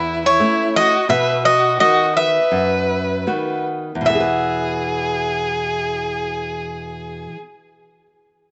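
In a straight four, this hopeful Greek folk fragment slows over its first 4.1 seconds as a bright, metallic bouzouki carries the melody up front, a nasal, vibrato-laden violin sings a second line beneath it, and a fingerpicked flamenco guitar gives warm accompaniment, all wrapped in a moderate plate reverb with a soft, rounded top end.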